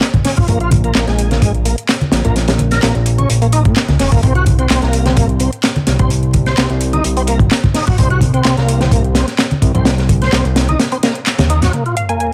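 A crunchy, saturated breakbeat kit with a punchy kick and high-tuned snare opens this raw, swaggering 128 BPM breaks excerpt, layered with metallic house hats and claps, very quiet soft-handed congas, and a fat, detuned sawtooth bass, while an overdriven tonewheel organ with key click, chorus vibrato, slow rotary speaker and tape echo rides a Bbm7 to Cm7b5 riff over vinyl crackle until a band accent at 11.3 seconds gives way to an impact with a sub drop, a very quiet moody pad and a glassy, warbling wavetable pluck at 12.0 seconds.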